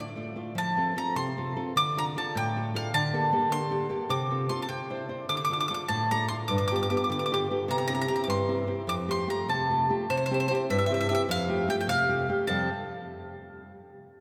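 Drenched in a cathedral-like reverb with a long four-second tail, this short fragment of a sunny, lively Italian folk serenade sounds as if it was captured in a church or concert hall. A picked bowl-back mandolin sings the melody on its double strings, while a fingerpicked classical nylon-string guitar with fresh strings accompanies it; both instruments are bright and sit up front, playing throughout. The music sways in a rubato 6/8, moving from a minor-tinged opening through added-ninth colours to a brief closing phrase.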